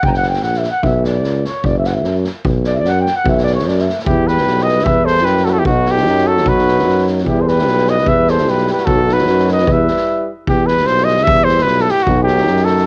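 Restless and bittersweet, this cut from a longer Balkan brass band piece moves at a brisk 150 BPM in a straight 2/4, opening in B harmonic minor before shifting to E harmonic minor at 4.0 s. A mellow, distant flugelhorn takes the solo spotlight in the opening seconds, its roomy tone carrying a faded cassette quality and plate reverb. Underneath, an up-front tuba with light vibrato and a gritty, saturated edge holds down the bass, while a street-band drum kit in a small room drives things with a boomy kick and a medium-tuned snare, its top rolled off and softened by tape. From 4.1 s a classically styled trumpet, also carrying light vibrato and plate reverb, takes over the melody up front, supported by very quiet trombone and euphonium accompaniment, the latter with a smooth top. A short break arrives at 10.1 s, and the flugelhorn bows out at 10.3 s as the harmony keeps swinging between E minor and B major. 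The whole thing has the intimate, lightly reverberant feel of a home recording on cassette.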